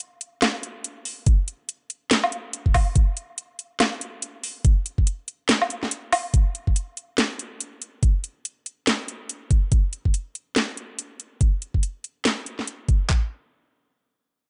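Dubstep with a meditative, heavy mood, this passage cut from a longer piece rides a swung half-time groove built entirely from two layered, tape-warm electronic garage drum kits sitting up front. Hi-hats, a cracking snare and woodblock open the track, joined at 1.3 seconds by handclaps and a knocking kick, which drops out briefly from 5.5 to 6.3 seconds as the opening drop gives way to a new section. The sound is dry and gritty, with a top end that stops at 10.5 kHz.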